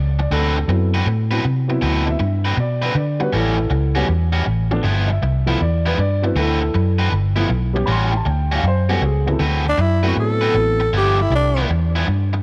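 A rollicking, gritty blues cut from a longer piece, swinging in four with a dark, mellow concert grand piano comping under a punchy, foam-muted electric bass that sits up front and a biting, overdriven guitar riff entering at 0.2 seconds. The piano drops out at 10.8 seconds, while a growling, raspy tenor saxophone steps forward for a brief jazz-style solo from 9.7 to 11.7 seconds, scooping into notes with light vibrato. The players share a small room with light reverb, and the chords move through dominant thirteenth harmony before landing on a G6.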